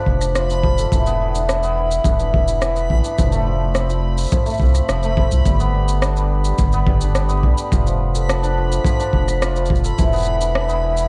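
Delicate and pastoral, this folktronica excerpt sets shimmering, ringing hammered dulcimer arpeggios with delay up front over a round, deep analog bass, a punchy, gritty kick drum and a tape-warm electronic rim click and shaker, while a reversed, dreamy texture drifts behind in its own reverb, all wrapped in a dark production with small room ambience and vinyl crackle.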